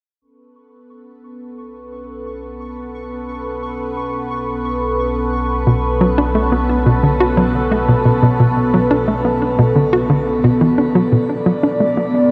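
Drenched in a huge, echoing reverb that makes the space feel vast, this short cut from a longer piece of sequencer-driven ambient space music unfolds in an expansive, hypnotic mood over a single Bm7 chord. A sweeping, resonant pad built from detuned sawtooth and triangle tones sits up front, holding sustained chords colored by chorus, phaser and shimmer reverb while its filter slowly swells and evolves. Beneath it, a fat, saturated analog bass anchors the low end with a mellow, thick tone, and a dark, pulsing gated texture of tempo-synced detuned unison adds a soft throb, all three fading in together from 0.2 seconds. At 5.7 seconds a hollow, bouncy square-wave pluck enters up front with a fast attack and short decay, its riff carried by chorus, tape echo and shimmer reverb. The texture drops out at 11.1 seconds, leaving pad, bass and pluck to close the brief final stretch.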